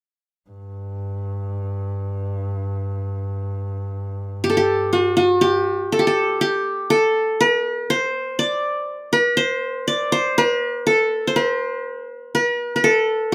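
A rough home-demo mix with light reverb frames this festive, stately Arabic passage in 10/8, cut from a longer piece. A rich, focused bowed double bass opens alone at 0.5 s, holding a vibrato-laden drone until 5.5 s. The up-front acoustic qanun enters at 4.4 s and carries the melody through to 13.3 s with a bright-edged, plectrum-plucked triple-string shimmer.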